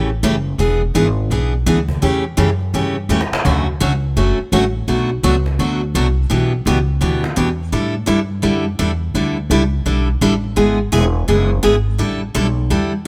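A bright, full-bodied picked acoustic guitar and a thumpy pizzicato upright bass open this playful, down-home western swing excerpt at a swung 168 BPM, with a very quiet, woody cajon sitting distant in a large room and playing a short fill at 3.1 seconds before the chords move from A7 and E7 through Dmaj7, Bm7 and A7sus4 to close on A9sus4, all under a light reverb.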